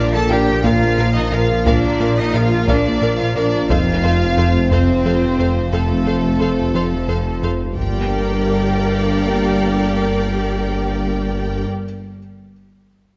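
A lone cello carries the melody in this brooding, relentless excerpt from a hybrid orchestral and electronic film score, its clear, smooth, vibrato tone set at a distance and trailed by a digital delay. It moves slowly at 59 BPM in 6/8 and sits in G minor, with Bb and F chords giving way to G minor at 7.8 seconds. Two violin sections share the upper lines: a lush one also plays the melody and a clear, intense one plays a second line, while a focused viola section fills in the harmony beneath. A shimmering, retro pulse-width pad with chorus and a French horn section in classical style hold sustained chords in the background, and a softly muted, felt-dampened upright piano adds intimate texture with audible action noise. The low end stacks a bowed cello section, a distant double bass section, a menacing, saturated detuned saw bass with a filter swell, and a fat analog bass riff that drops out at 7.6 seconds. 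A close taiko ensemble struck with heavy sticks enters at 0.6 seconds beneath it all, and the whole piece sits in the reverb of a scoring stage with a dark, rolled-off top.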